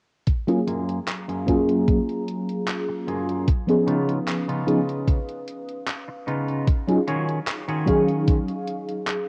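A detuned, warbling tape-like pad, a thumpy, up-front electronic kick and a gated 80s drum machine with handclaps and hi-hat open this dreamy, nostalgic vaporwave excerpt at 0.3 s, a slow 75 BPM in F# major, before a soft, round FM electric piano with tremolo and tape echo, and a bright, clean semi-hollow electric guitar riff under a filter sweep, move through F#maj9, C#9 and D#m11 in a rough cassette demo mix bathed in plate reverb.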